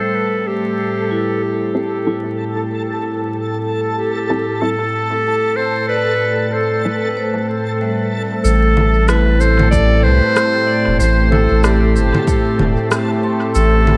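A swung groove at 94 BPM in 4/4 drives this spacious, meditative ambient dub passage in A minor, cut from a longer piece and resting on an Am7 chord. A clear, classical-style clarinet carries the solo melody up front, its tone roughened by vintage 12-bit sampler grit and trailed by tape echo. Beneath it, a smooth, detuned sawtooth pad holds sustained chords through chorus while a filter sweeps across it. Metallic vibraphone arpeggios ring through a low-pass filter and tape echo, and a reversed, granular swelling texture adds a dreamy, bright shimmer. A muted, plucky dub chord stab sits in the background from 1.7 to 7.0 seconds, and at 8.4 seconds a round, soft sub bass arrives with electronic shaker, congas and rim click soaked in dub echo, joined briefly by a deep, layered kick. Light reverb and digital ambience frame the sound, with vinyl crackle running throughout.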